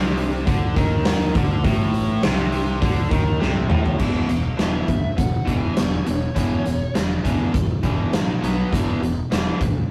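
A huge, punchy arena drum kit sits up front in this anthemic, swaggering hard rock excerpt, rolling through a fill at 3.4 seconds while a bright, tight distorted guitar and a hollow-bodied overdriven semi-hollow guitar grind out the riff over a growly fuzz bass, and a dark, smooth lead guitar slips in a brief melody from 4.6 to 6.9 seconds, all caught in a rough, saturated rehearsal-room sound with moderate small-room reverb.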